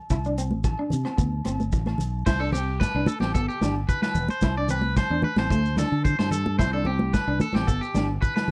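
A punchy, bright fingered bass sits up front in this carefree highlife guitar band excerpt, with a twangy, slightly broken-up electric guitar picking an accompaniment through a phaser alongside a distant, roomy vintage drum kit with dark cymbals and a rolled-off top. Agogo bells ring from a large room, while a grainy shekere and damped, high-tuned congas played with soft hands sound close and dry. At 2.3 seconds a second, compressed guitar enters with picked arpeggios in a higher register, carrying a slapback echo over a Csus2, D5 and G progression in a straight 4/4 feel with little reverb.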